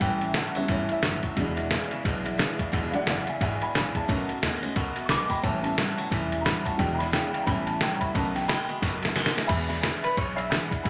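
Retro and upbeat, this rockabilly cut swings at 177 BPM in E mixolydian, taken from a longer piece. A detuned, jangly honky-tonk upright piano takes a solo from the start until 9.5 seconds, while a clean, twangy electric guitar plays a low riff and a full-bodied dreadnought acoustic guitar picks out fresh-string brightness further back. A woody, gut-strung pizzicato upright bass sits darkly in the background beneath a muffled, pitched-down sampler-style drum kit that is up front, with a thumpy kick, fat snare, ride and crash. A drum fill carries the band from 8.8 seconds into a new section as the riff stops, and at 10.0 seconds a slightly broken-up lead guitar through a small old amp enters with a vibrato-laden melody. The changes move through A7, E7 and B7, and a wet club reverb gives the whole band a lively, compact room sound.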